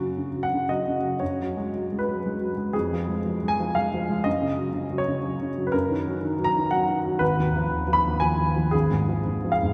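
In a three-beat metre with uneven, rubato phrasing, this bittersweet, brooding romantic character piece for solo piano is cut from a longer piece and runs just under 10 seconds. The baby grand sounds warm and intimate, sitting up front with audible action noise and a short, natural sustain as it moves through shadowy minor harmonies across a broad span from the low bass to the upper treble. A wet cathedral reverb with a long decay surrounds it.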